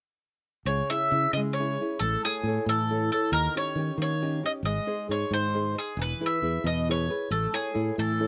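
Dry, with an open-air feel and little reverb, this short cut from a longer Italian folk serenade moves at 90 BPM in 6/8, wistful and passionate, as a bright, double-strung bowl-back mandolin carries the picked melody up front over a fingerpicked classical nylon-string guitar with fresh strings and a warm, direct fretless electric bass, all three playing from 0.7 to 8.3 seconds through C#m, A, D#7, G#, E and A.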